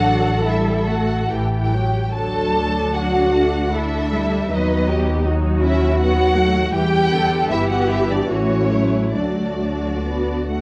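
A tender, lyrical slow movement for string orchestra in D major opens with all five sections bowing together from the first moment, in 3/4 with rubato at roughly 66-81 BPM. The violins carry the melody high above, rich and lush with expressive vibrato, while a second violin line moves smoothly and evenly beneath, set slightly distant. A dark viola section fills the middle with soft-attacked accompaniment, and the cellos add an expressive, symphonic glow, with the double basses sitting up front as a smooth, even foundation. The harmony drifts from a suspended A chord to D, leans through B7/D# and E minor, and settles back on D at 9.1 seconds in this brief fragment cut from a longer piece. A moderate recital hall reverb surrounds the strings, and the sound carries the worn, warbling pitch drift of old cassette tape.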